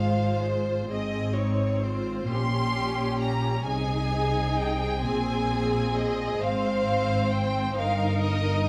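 A smooth first violin section carries the melody between C5 and C6 with light vibrato and a warm, symphonic sheen. Beneath it, the second violins play an expressive second line in a rich, close chamber voice, while the violas supply an even, distant accompaniment. The cellos hold the bass with a dark, intimate tone and soft attacks, joined by double basses whose vibrato lends a full, bowed depth. This slow romantic movement for string orchestra sways in 6/8 with a flexible rubato, its yearning, melancholic harmony passing from Fm/Ab through Gdim/Bb and Ab/C before reaching Eb/G at 7.8 seconds. A moderate scoring-stage reverb surrounds the ensemble, and the 8.7-second passage is a fragment of a longer piece.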